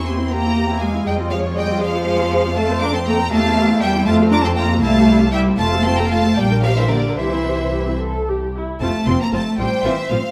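Rich, smooth cellos sit prominently beneath an intense first-violin melody with a light vibrato, while lush, distant second violins, even violas and close, up-front double basses fill out this graceful, lively classical-period string orchestra fragment in a rubato 6/8, set in the moderate reverb of a recital hall.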